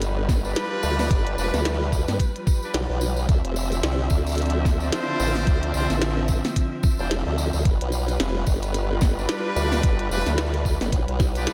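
Glitch hop at 110 BPM with a 16th-note swing, this gritty, swaggering snippet rides a pitched-down, thumpy electronic kick and an up-front formant-sweep wobble bass with chorus, while a glitchy kit of tiny snare and clicky hats, recorded in a large room, and a jingly, saturated tambourine fill out the groove. Dark, lush symphonic strings hold sustained chords over G7 and Dm9 with sidechain pumping, and a clear jazz-style horn section adds soft-attack stabs with light vibrato and delay from 0.4 seconds. A drum fill at 11.2 seconds closes the cut, all set in a light, small-room reverb.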